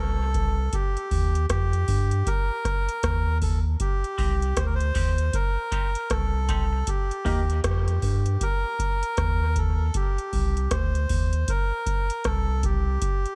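A reedy, breathy melodica carries the melody over a round, sine-like sub bass from the opening, with a booming analog drum machine of deep kick, metallic hats and rim click joining at 0.3 seconds in this spacious, heavy dub reggae cut with a swung sixteenth-note feel. After an opening break, a bright, clean semi-hollow electric guitar slips in quietly from 4.2 to 7.4 seconds, high-pass filtered and carrying the same dub echo as the melodica, as the harmony moves between Eb and Cm. The dry mix keeps the bass and drums up front.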